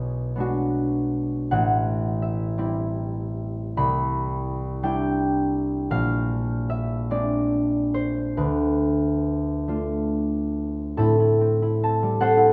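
Close, detailed microphones in a moderate recital-hall reverb frame this brief, wistful and gentle fragment of a classical solo piece for concert harp, whose thumb-plucked, ringing strings sit up front across a range from A1 to B5, drifting in a rubato 6/8 at 44-60 BPM through chords such as Bm6, Cmaj9, Bb9 and Dm6 before a new section opens on Am7 at 11.0 seconds.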